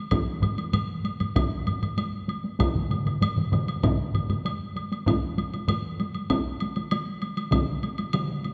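This is Japanese traditional taiko drum ensemble music, a ceremonial and powerful passage cut from a longer piece, moving in a straight 4/4. A solo taiko part struck with heavy sticks opens at once with a small-room sound and drops out at 5.8 seconds. Alongside it, one taiko ensemble played with heavy sticks has a vintage, band-limited character, while another sits in the background with the airier sound of a live room. A woodblock adds a woody, small-room tone throughout. At 2.6 seconds a further taiko ensemble enters up front with hard sticks, sharing that aged, narrowed-band tone, and the whole passage is bathed in the wet reverb of a scoring stage.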